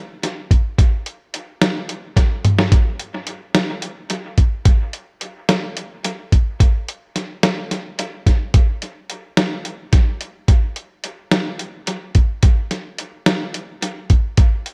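A muffled, pitched-down, sampler-style drum kit sits up front in this driving, bright progressive instrumental excerpt in 7/8 with a straight feel, its thumpy kick, medium-tuned snare, hi-hat and toms compressed, overdriven and trailed by dub echo under light reverb in an echo-heavy mix, with a brief fill at 2.2 seconds.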